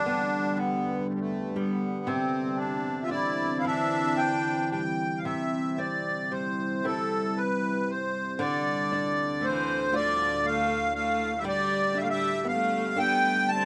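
Mournful and full of longing, this Celtic slow air drifts in a loose, rubato 6/8, its uneven beats giving the phrases room to breathe. A reedy, sweet accordion carries the melody up front, its light tremolo tuning lending a gentle shimmer. Beneath it, a small, fingerpicked nylon-string guitar offers soft acoustic accompaniment, while a deep, dark ambient pad holds sustained chords with a sub octave, detuned unison sawtooth and sine tones, slow attack, long release, chorus and its own reverb. At 9.4 s a single bowed viola slips in with a smooth, even second line touched by vibrato. The harmony moves from G/D through Cadd9, C and Dm to Gadd9, and the whole excerpt sounds like a band playing live together in a moderately ambient studio room.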